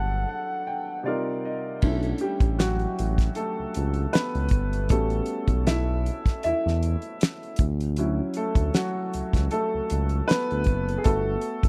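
R&B and neo-soul in a sultry, smooth mood, this brief cut from a longer piece opens with a flugelhorn phrase carrying tape echo and light vibrato, gone after 1.0 seconds, while a woody upright piano fills through a break over a mellow, sawtooth-edged synth bass. At 1.8 seconds a damped 70s kit with a fat snare, tight kick and dark cymbals enters beneath a long-sustaining piano solo, moving through lush ninth, eleventh and thirteenth chords on a gentle sixteenth-note swing. The sound is dry and close, in a 1970s studio style, with piano, bass and drums up front.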